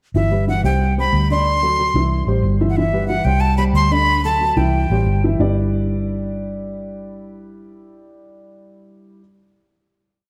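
A breathy, bright jazz flute with tape echo leads this short, festive salsa piece in G major at 182 BPM, voicing crisp, vibrato-tinged call phrases until 5.2 seconds. Beneath it, a round, punchy foam-muted electric bass plays a tumbao that anticipates the chords, while a dark, boxy grand piano with subtle chorus repeats an octave montuno over a G6, C, D7 vamp before settling on a final G6 chord at 5.4 seconds. The danceable mix is soaked in a dreamy plate reverb.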